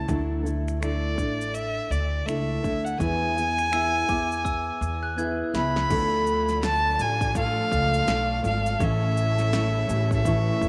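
A roomy echo-chamber reverb surrounds this easy-going, heartfelt acoustic pop piece, cut from a longer work and set at 83 BPM with a swung sixteenth-note feel. Up front, a smooth, bowed violin with vibrato carries the melody over a full-bodied, fingerpicked steel-string guitar, a woody pizzicato upright bass and a punchy, produced house drum kit of kick, snare, finger snaps, shaker and crash, which plays a fill leading into 5.9 s. A ringing, bell-like glockenspiel with tape echo adds a second line from 3.7 s, and from 5.9 s a lush studio string section with soft attack and portamento holds sustained chords in the background as the harmony turns to D minor.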